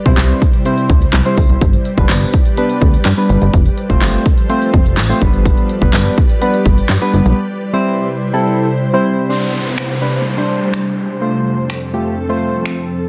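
A punchy, up-front pop drum kit leads this euphoric, summery dance-pop excerpt, layering a fat, softly clipped snare, crisp hi-hat, handclaps and finger snaps over a tape-tinged electronic kick. Soft, round electric-piano-like synth keys with chorus carry the accompaniment, while a plucky, funky analog bass sits underneath. Both the keys and the bass share the sidechain pumping of an ethereal pad, which holds sustained chords through ensemble chorus and built-in reverb. A jingly acoustic tambourine adds sparkle in the early bars as the harmony moves from C through G and F. The bass stops at 7.3 s and the drums fall silent from 7.4 to 9.3 s, leaving the pad and keys to carry on. From 9.3 s the drums return as the chords shift to Csus2 and F beneath an electronic downlifter, all framed by light reverb in a dense, heavily limited modern master.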